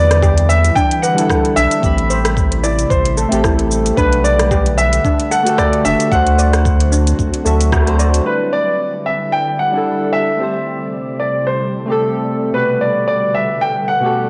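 A clear, up-front baby grand piano carries the wistful, smooth melody of this sunset chillout excerpt over soft, chorused electric-piano-like synth keys, an airy detuned pad, a round sub bass, a gritty electronic kick, an overdriven deep house kit with metallic hats, cabasa and rim click, and a shimmering steel pan playing arpeggios in the background. After a band accent at 7.7 seconds, the drums, bass and steel pan drop out by 8.2 seconds, leaving piano, keys and pad in a spring-reverb ambience with the dulled top end of a home cassette recording.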